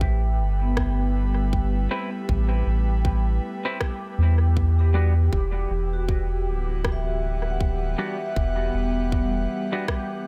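A tight electronic kick drum and a produced rim click entering at 0.8 s set a swung 79 BPM pulse in 4/4 for this hazy, spacious ambient dub excerpt, where a deep, round sub bass sits up front beneath an airy, breathy chorused pad, a bubbling, resonant stepped-filter texture, mellow soft-mallet vibraphone arpeggios through a low-pass filter and tape echo, and clean hollow-body electric guitar stabs arriving at 1.9 s with lush chorus and dub echo, as the harmony moves from A7(no3) to Em7 at 4.6 s.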